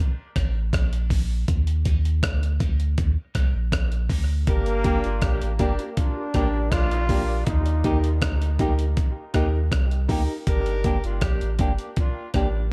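A dark, warm production with small-room ambience frames this meditative, spacious dub reggae passage in G minor at 80 BPM, cut from a longer piece and moving between G minor and E-flat. A gritty, compressed sampler-style kit with a thumpy kick, hi-hat and rim click sits up front beside a round, deep sine sub bass, while a distant, tight horn section carries a second line and a woody, vintage upright piano plays stabs, both soaked in dub echo and high-pass filtering. A clean semi-hollow electric guitar with subtle chorus enters at 1.9 seconds as accompaniment, and a brilliant, forceful trombone with vibrato takes the melody from 4.5 to 8.2 seconds, its echo trailing behind.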